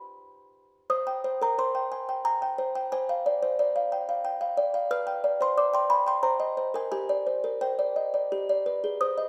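A classical lullaby in C minor, eerie and fragile, in which a lone music box with a large, mellow body plays delicate, tinkling notes, slightly out of tune against A4 = 438 Hz, at about 89 BPM in a rubato 3/4 with uneven beats, sitting up front in a moderate concert-hall reverb as chords such as Dm7b5/C, G/B and Gsus4 settle onto G in a 9.3-second fragment cut from a longer piece.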